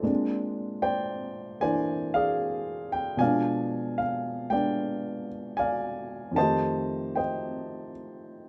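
Relaxed and sophisticated, this short solo jazz excerpt swings gently as a baby grand piano moves through rich ninth and diminished harmonies over 8.5 seconds. The piano sits up front with an intimate, natural tone, its action noise audible, spanning from low bass to bright upper register. A moderate studio reverb gives the room a soft, polished glow.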